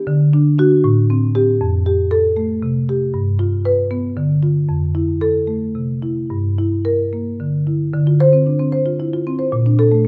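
A woody, dark-toned marimba played with medium mallets carries this reflective, flowing contemporary classical solo in D minor, moving at 77 BPM in a straight 6/8 through chords such as Am7, Fadd9, G7 and Fmaj7 before shifting into a new section at 7.9 s on Dm7 and Bbmaj7, its smooth padauk bars captured up front by close, detailed microphones and bathed in the lush reverb of a recital hall in this short passage cut from a longer work.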